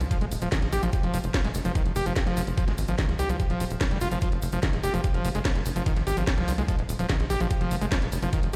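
Heard through a big sound system in a bare stone room with a light wash of reverb, this short cut from a longer psychedelic trance piece feels intense and driving in a straight four. A knocking electronic kick and a drum and bass kit with a cracking snare and bright hats sit under a tight, punchy sequencer bass with a plucky sawtooth bite, while a faint grainy egg shaker stays close and dry in the background. Up front, an overdriven acid bass riff enters at 0.1 seconds, squelchy and gritty with resonant filter sweeps, distortion, sidechain pumping and a digital delay.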